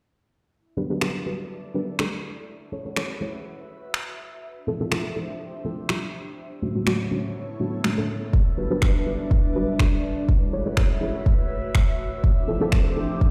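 Heard through a big sound system in a bare room with a large studio reverb, this late-night deep house excerpt in E dorian moves at 123 BPM with a light 16th-note swing. An airy, breathy pad fades in from 0.5 seconds, colored by chorus and phaser and pumping against the beat. It is soon joined by deep, nasal chord stabs trailing dub echo and by overdriven electronic finger snaps, cycling through Em7, F#m7, Dm7 and Bm7. At 8.3 seconds a warbling, lo-fi tape-like pad with a slow attack arrives together with a gritty, up-front kick drum.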